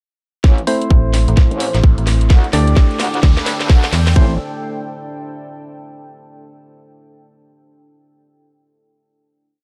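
Swaggering and bouncy, this short bass house build opens at 0.4 seconds with a tight, up-front four-on-the-floor electronic kick, a garage kit's cracking snare and programmed hats, and an aggressive metallic wobble bass with changing wobble speed. Hollow organ-like stabs begin echoing sparsely at 0.7 seconds, and a mellow, digital FM bass joins at 0.9 seconds with chopped phrases that answer the wobble bass. A deep, moody, detuned pad enters at 1.5 seconds under a filter sweep, and a background riser adds transition lift toward the final chord at 4.2 seconds. The pad, both basses and the stabs pump against the kick in a dark, dry production.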